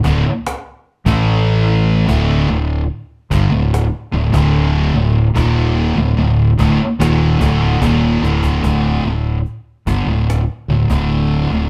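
Ominous and heavy, this stoner and doom metal piece sets two thick fuzz guitars, one of them dark and up front, over a growly, bright overdriven fingered electric bass and a snappy cajon with snares, while a double-tracked sludgy distorted guitar riffs in the background on D5 and A5 chords until a cajon fill at 8.2 seconds leads into a new section at 8.6 seconds where that guitar stops, with the band playing live in one room under moderate studio reverb.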